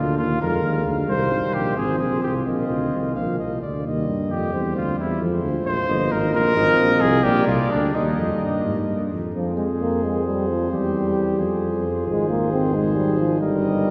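Classical brass quintet music with a stately, noble bearing moves in a straight 6/8 across this short excerpt, cut from a longer piece. A warm, present cornet carries the melody high above, while a clear trumpet with a smooth top sits up front on a second line just beneath it. The French horn and trombone fill out the accompaniment from the background, both close-miked, and the trombone and tuba share a light vibrato. The tuba anchors the bass up front yet sounds distant and roomy. All five play throughout, bathed in the long, wet reverb of a church or concert hall, and the harmony turns darker with a new section at 9.4 seconds.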